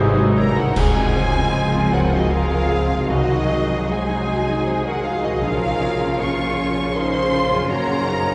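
Bathed in a long cathedral reverb and heard from deep in the hall, this short cut from a longer cinematic film score unfolds in a rubato three-four, tender and uplifting. A lush, vibrato-rich violin section carries the melody over an airy flute and a very quiet second violin line. Violas with portamento, a vintage-toned grand piano, mellow French horns holding chords and a ringing fingerpicked harp fill the accompaniment, while smooth cellos and double basses anchor the bass, and a bright clash of cymbals with concert bass drum enters at 0.8 seconds to mark an accent, sounding until 2.3 seconds.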